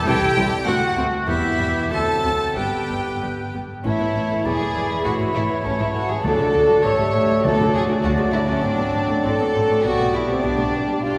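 A cheerful, graceful classical-period orchestral movement opens with a chamber violin section carrying the melody high up, bowed sul tasto with vibrato and a soft attack. Around it, a bright oboe, a clear, close-miked clarinet, an airy silver flute and a second, floating studio violin section play supporting lines. Almost at once an intimate viola section, a cello section and a double bass section fill in accompaniment and bass, while a distant, roomy French horn section settles into sustained chords in the background. The pulse sits between 91 and 103 BPM in 2/4 with a rubato feel, and the music moves from G major into A major at 3.9 s, where a mellow bassoon joins with a low accompanying part. Very quiet timpani struck with hard mallets add articulate touches from 6.2 to 8.3 s, and a generous church reverb surrounds the ensemble in this passage cut from a longer piece.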